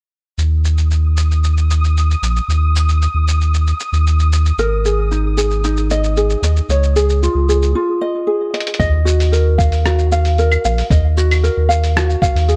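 A dry, close-sounding excerpt of delicate, wistful folktronica in Eb minor, moving at 114 BPM in a straight 4/4. A round, mellow sub bass sits up front from the start, carrying a filter sweep through the opening section, while a muffled, compressed lo-fi drum kit of claves, hi-hat, rim click and shaker ticks along underneath. A flickering, grainy granular texture hovers high above with its own built-in reverb until 7.8 seconds. A bright, thumb-plucked ukulele enters at 4.6 seconds with light arpeggios coloured by tape echo, over chords moving from Absus2 to Dbadd9. After a brief break and a drum fill, the second section opens at 8.8 seconds on Ebmadd9, where a thumpy, sampler-style electronic kick joins the groove.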